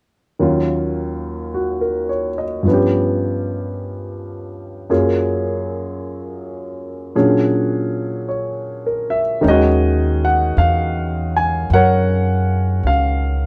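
Jazz ballad in Eb minor at a slow 53 BPM with a swung 4/4 feel, its smoky, intimate mood carried by a warm concert grand piano that plays accompaniment from 0.4 seconds, up front and natural, with deep bass and audible action noise, over chords such as Ebm7, G7#11, Gbmaj9 and Bb7alt. At 9.4 seconds a woody, dark upright bass with steel strings enters up front, played pizzicato, as the harmony returns to Ebm7. Light reverb colors the recording in this excerpt cut from a longer piece.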